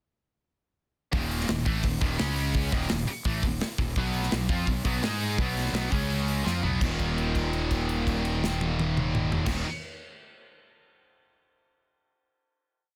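A dense, heavily limited modern master in a small room ambience frames this short, complete heavy metal piece, epic and heavy in mood. From 1.1 seconds a bright, double-tracked high-gain guitar sits up front with a picked power-chord riff, while a growly, fuzz-laden fingered bass drives eighth notes that double the guitar riff. A polished, airy acoustic drum kit with a punchy kick and medium-tuned snare lays down a big rock groove using crash, hi-hat, kick, snare and toms. At 4.0 seconds a second distorted, picked guitar joins in the background with its own power-chord riff. A drum fill at 6.5 seconds leads into a final Eb5 chord held from 6.8 seconds to the close.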